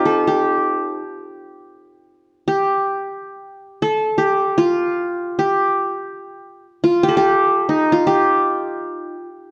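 Longing and soulful, this brief excerpt of Turkish makam music features a solo acoustic qanun, played with fingerpicks, for its full 9.5 seconds. The triple-strung instrument sits up front with a bright-edged tone in a moderate recital-hall reverb. The sound carries the worn, warbling pitch drift of old cassette tape.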